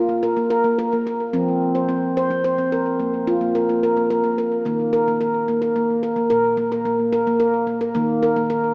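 Meditative and hypnotic, this short excerpt of world-style tuned percussion in a straight 6/8 features a solo handpan up front, its ringing, mellow stainless-steel tones struck with soft fingertips and trailed by tape echo. A dreamy, reverb-soaked mix with a long plate tail and a small-speaker quality surrounds the instrument, which shifts to a second section at 4.7 seconds.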